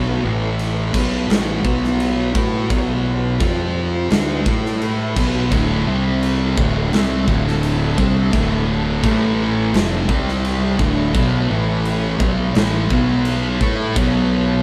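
A thick fuzz guitar sits up front, its warm, distorted picked riff driving this brooding, heavy stoner and doom metal passage at 85 BPM in a straight 4/4. A growly, overdriven fingered bass adds low weight with a punchy fuzz tone, while a big acoustic rock kit enters at 0.6 s with a punchy kick, medium-tuned snare and crashes ringing in a bright stone room. At 5.5 s a second, darker fuzz guitar joins from the background, thickening the riff. Very quietly beneath it all, a vintage string machine holds shimmering, soft-attack violin chords with an ensemble chorus sheen. The chords move through power-chord shapes around A, B, F, D and C, with a single D minor, and the band sounds like it is playing live together in one stone room with moderate reverb, cut from a longer piece.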